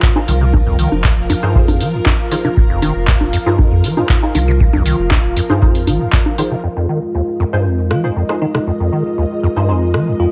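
Bathed in light digital reverb, this gritty, trippy acid house passage pairs a squelchy, saturated square-wave acid bass riff and a round sine sub bass with a lush, phased string machine carrying sustained chords through 12-bit sampler grit, an airy, breathy pad (both pumping against the sidechain), and muted dub chord stabs trailing tape echo, all over a tape-warm kick and an up-front, booming analog drum machine of congas, handclaps, metallic hi-hats and rim clicks, until the kick stops at 6.2 s, a filter sweep moves across the strings from 6.6 s, and a sparkling, bell-like FM electric piano with tremolo and delay enters at 7.9 s.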